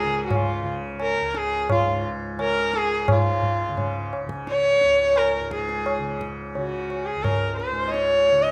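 Radiant and devotional, this short excerpt of Hindustani classical music in Db raga bilaval moves at 87 BPM in 4/4. A rich, bowed sarangi sits up front, carrying the melody with light vibrato, gliding portamento and the resonance of its sympathetic strings. Beneath it, a mellow, softly plucked tanpura drone buzzes and shimmers, while a low-tuned, ringing tabla enters at 0.3 s with a close, dry sound, all set in a moderate recital-hall reverb.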